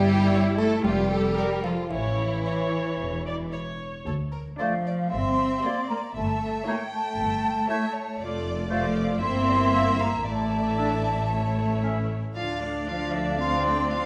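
Sneaky and mischievous, this playful, whimsical cinematic cue in D minor at 115 BPM opens with a delicate, tinkling music box melody that stops at 3.5 s over bowed violin, viola, cello and double bass sections and background French horn chords, while a chamber violin melody entering at 0.3 s carries on and an airy flute ensemble, a distant oboe and a clear clarinet join at 4.6 s, all set in a wet scoring-stage reverb.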